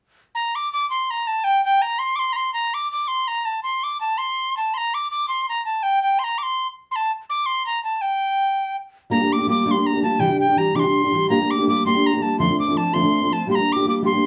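Celtic folk in 6/8 at 110 BPM in dotted quarters, this short excerpt taken from a longer piece has a driving, spirited mood in G dorian. A tin whistle opens alone at 0.3 seconds, carrying the melody up front with an airy, metallic tone, a crisp attack with audible chiff, and touches of vibrato. At 9.1 seconds a fingerpicked steel-string acoustic guitar enters as accompaniment, its dark, full-bodied dreadnought sound sitting up front beside the whistle. The guitar outlines a progression moving from Gm to Cadd9, back to Gm, then to F6 before returning to Gm, while the whistle repeats its opening section above it. A wet small-room reverb places the pair a little further back in the space, and both parts play through to the close at 14.3 seconds.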